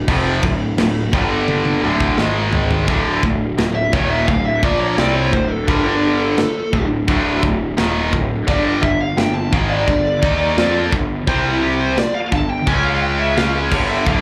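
Aggressive and relentless, this heavy metal passage, cut from a longer piece, drives forward in a straight 4/4 feel with the sound of a live club gig heard through the venue's PA. A bright, up-front distorted rhythm guitar, double-tracked and carrying a slapback echo, plays the riff alongside a growly, fuzz-overdriven picked bass and a tight acoustic drum kit with bright cymbals, a medium-tuned snare, a tight kick, toms, crash and china. The drums deliver a fill from 1.5 to 2.9 seconds, leading into the second section. At 3.8 seconds a dark, high-gain lead guitar enters and carries the solo through to the end. The harmony centres on D minor and heavy power chords, with the room adding a light club reverb around the whole band.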